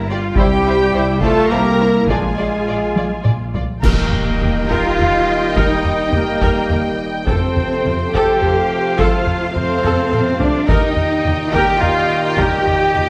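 Heavy-stick taiko drums drive this relentless, heroic cinematic orchestral cue at 105 BPM in 3/4, entering at 0.4 seconds under dark, distant French horns, clear trombones and a lush string body: rich violins carry the melody over an expressive second violin line, focused violas, soft-attack cellos and woody double basses. A drum fill leads into the second section at 3.8 seconds, where close-miked trumpet stabs arrive with a band accent and bright clash cymbals with concert bass drum, which stop at 5.0 seconds, as the harmony moves from C and Bb7 through Eb and F and back to Eb. Moderate scoring-stage reverb gives the music a roomy, symphonic scale, and the excerpt is cut from a longer piece.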